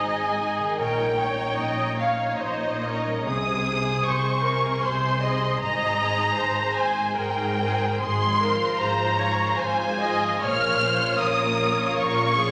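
Set on a wet scoring stage with a generous wash of reverb, this slow, rubato romantic orchestral passage in 3/4 at 75 BPM carries a melancholic, yearning mood, moving from Ab major into F minor at 8.0 s. Up front, the violin section sings the melody with focused vibrato and a smooth top, while a second violin line and a clear viola section fill the middle. Dark, expressive cellos with portamento and a rich, distant double bass section anchor the bass, and a ringing concert harp adds arpeggios in the background.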